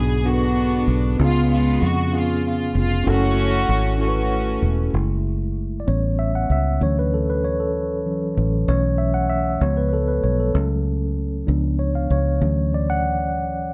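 Soulful and solemn, this slow gospel excerpt in F# minor moves at 64 BPM in a straight 6/8. A reedy, gut-string studio string section carries the bowed melody until 4.9 seconds, over mellow, clean tine electric piano and a punchy, foam-muted fingered electric bass. From 4.9 seconds the tine electric piano takes a solo until 13.7 seconds, moving through chords such as F#m9, Dmaj9 and C#7b9, while light reverb and a dark production frame parts that all sit up front.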